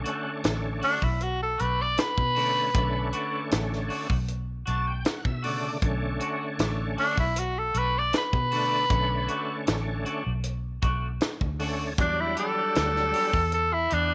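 A raspy, gritty tenor saxophone carries the mournful, brooding melody of this straight-eighth soul blues in B minor at 78 BPM, entering at 0.8 seconds with vibrato and scooped notes over a bright, lightly overdriven tonewheel organ with key click and a slow rotary speaker (the organ adds a fill at 4.3 seconds), twangy clean electric guitar stabs in lush chorus, a dark, round foam-muted fingered bass and a tight funk drum kit with a high-tuned snare, set in a small room with light reverb as the harmony moves from Bm7 to Em7 at 12.0 seconds.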